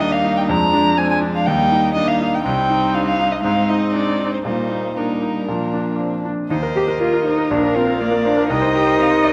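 In a straight 4/4 at 120 BPM, this lively, cheerful classical-period movement for piano quintet in Eb major, cut from a longer piece, pairs a brilliant grand piano up front with a muted string section whose veiled, con sordino tone sets it apart. The lead violin sings the melody with vibrato and portamento, while the cello and a background second violin carry supporting lines and the viola adds light-vibrato accompaniment alongside the piano's short-sustained accompaniment. A recital-hall reverb gives the group a wet bloom, and a new passage begins at 6.5 s, moving through Eb, Bb and Cm.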